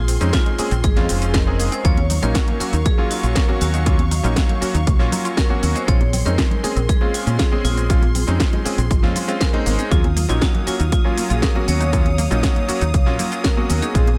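A dark, metallic vibraphone melody with digital delay opens this sleek, sensual nu-disco excerpt over lush, sidechain-pumping string chords and a round, up-front dub bass. It is joined almost at once by a very quiet detuned analog pluck arpeggio, overdriven house drums with a cracking snare, hi-hat and shaker, a clear, clangy electric grand piano with a chorused, pumping accompaniment, and a punchy overdriven kick. A faint electronic swell arrives at 1.4 seconds, and soft-handed congas and bongos enter in the background from 2.0 seconds, all set in a dry mix.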